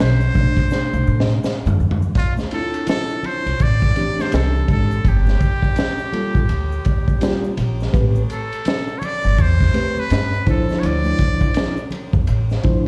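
A swung 83 BPM groove in 4/4 anchors this cool, nocturnal jazz-hop excerpt in D minor, driven by a crunchy, saturated breakbeat kit with a punchy kick, high-tuned snare and dark cymbals sitting up front, plus a drum fill from 0.7 to 2.2 seconds, while a woody pizzicato upright bass holds the low end and soft-handed shaker and congas stay close and dry in the background. A mellow tine electric piano heard through its built-in speakers carries the chords, moving through Dm9, Gm9 and Am9, as a buzzy, breathy trumpet with a metal mute plays the solo melody until 11.9 seconds. The whole sounds as if played on a big sound system in a bare room, with small room ambience and large studio reverb.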